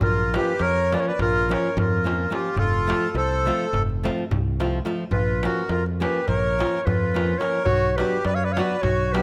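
In a straight 9/8 at 212 BPM counted in eighths, this bittersweet, fiery Balkan wedding-band fragment puts a mellow, classical-style clarinet solo up front on the melody, joined by a reedy, close-miked accordion on a dry, full second line with slow beating, a dark, round, punchy fingered electric bass, a crisp, deep, compressed and saturated metal-shell darbuka, and, from 0.3 s, a bright, boxy fingerpicked flamenco guitar with finger squeak, over A#m, F, A#m and Bm in a moderate recital hall reverb caught by close, detailed microphones.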